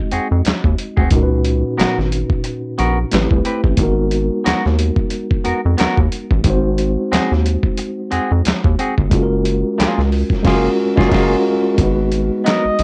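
A mellow tine electric piano opens this sultry, smooth neo-soul R&B excerpt, joined almost at once by a bright, clean semi-hollow guitar line, both bathed in plate reverb, over a rubbery, nasal square-wave bass and a gritty, overdriven sampler-style drum kit with a thumpy kick, handclaps and a lightly swung groove. The band hits an accent from 10.4 to 11.8 seconds, and a close-miked flugelhorn with light vibrato slips in at 12.5 seconds just as the excerpt ends. The whole recording carries a worn cassette-tape character with warbly pitch drift.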